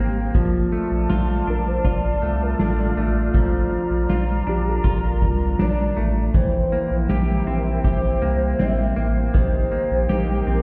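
A straight 4/4 pulse at 80 BPM comes from a soft-mallet drum kit in the background, its hi-hat, medium-tuned snare and boomy kick playing from 0.3 to 10.3 seconds. This floating, dreamy dream pop passage in Bb lydian is cut from a longer piece, with chords moving from Bbmaj7 to C7/Bb and then a rootless Abmaj7/Bb. A saturated sub bass sits up front, deep and thick with a fast attack, while a direct-recorded clean electric guitar plays bright, twangy, compressed picked arpeggios through analog chorus and delay. A small flute group holds airy, expressive sustained chords with vibrato, and a velvety synth lead carries the melody with a smooth, mellow, wave-folded sawtooth tone layered in unison and treated with chorus and delay. The mix sounds muffled, as if heard through a wall, and sits in a stone room reverb with light small room ambience.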